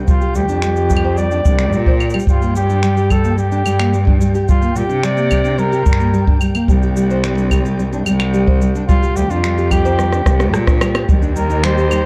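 Wistful and intimate, this folktronica fragment sets a fingerpicked nylon-string guitar, carrying a vintage sampler grit and a hint of finger squeak, over a rich, bowed cello bass and a boomy acoustic kick, while electronic shaker, finger snaps, claves and rim click add a tape-softened patter. A distant flugelhorn with light vibrato carries the melody through delay, and a grainy, flickering texture glimmers in the background as the chords move from Csus2 to Gm and back. After a drum fill at 10.0 seconds, a very quiet, nasal, gut-string quartet enters at 11.1 seconds on an Ebmaj7, all within a dark, gently reverberant mix.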